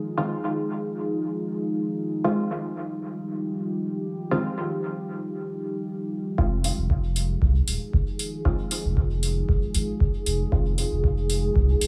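Dub techno in F minor at 116 BPM, this hazy, deep cut from a longer piece sits on a single Fm7 chord with a lightly swung 4/4 feel. A dark, full-bodied sawtooth pad holds sustained chords throughout, its slow attack and long release softened by chorus and built-in reverb and breathing with sidechain pumping. From 0.2 seconds, a muted, detuned chord stab with a short filter pluck adds evolving movement through chorus, phaser and a trailing dub echo. At 6.4 seconds, a tape-warm analog kick and a smooth, clean sine sub bass arrive together, the bass pumping under the kick, with metallic hi-hats joining just after. The echo-heavy mix carries light reverb and a small-room ambience, giving the drums a close, re-recorded character.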